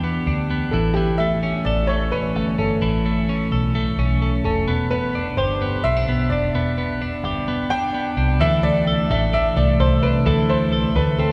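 Jangly indie pop at 129 BPM in a straight 4/4, bittersweet and wistful, with an up-front, clean, compressed twelve-string electric guitar playing arpeggios over a dark, round, foam-muted picked electric bass through chords moving from Em7 to A and landing on Dsus2 at 8.4 seconds. A clear upright piano enters at 0.7 seconds with the melody, its woody tone and audible action noise giving it an intimate feel. A long cathedral reverb from a church or concert hall surrounds this short cut from a longer piece.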